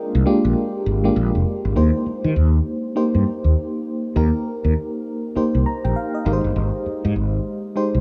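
Swung sixteenths at 100 BPM in 4/4 drive this bouncy, upbeat new jack swing R&B clip in Eb major, where a dark, round fretless electric bass with analog chorus sits up front beneath a fast-attack FM electric piano with tremolo and a noise layer, which plays a fill from 5.4 to 6.6 seconds over chords moving from Bb7 to Eb6 to Abmaj7, all soaked in a dreamy cathedral reverb.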